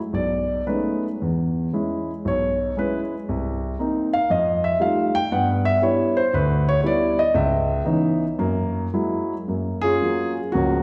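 Swinging and sophisticated, this brief solo jazz excerpt features a dark baby grand piano moving at 117 BPM in 4/4 with a swung, rubato feel, its chords passing from B13 through E6, Cm7 and F9 to a close on F#maj7. The piano sounds mellow, smooth and vintage, sitting up front with long sustain, spanning B1 to G5. A wet recital hall reverb with a 1.7-second decay surrounds it, giving the sound the air of a church or concert hall before the passage shifts into a new section at 9.5 seconds.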